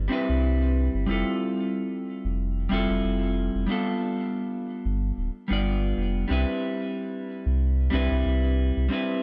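Lightly swung sixteenths in 4/4 carry this sunny fragment of sunset chillout. A dark, clean, picked electric guitar with delay moves from Cmaj9 through Fmaj7 and G7 back to Cmaj9 until 9.2 seconds, while a round, mellow sine sub bass sits up front beneath it until 8.9 seconds, both set in a moderate plate reverb.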